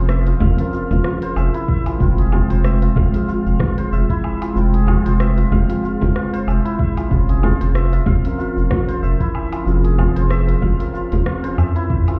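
Organic downtempo at 94 BPM with a swung 16th feel and a meditative, mystical mood, this excerpt pairs muted, felt-like synth keys (chorused, pumping and tape-echoed) with shimmering, ringing santur arpeggios over a round, nasal analog bass sitting up front, while an overdriven electronic kit of smooth hi-hats, rim click, shaker and woodblock mixes with a close, dry frame drum in the background and a deep, layered electronic kick entering at 1.7 s, all moving between Bbm9/F and Fmadd9 and heard muffled as if through a wall in a club-like reverb.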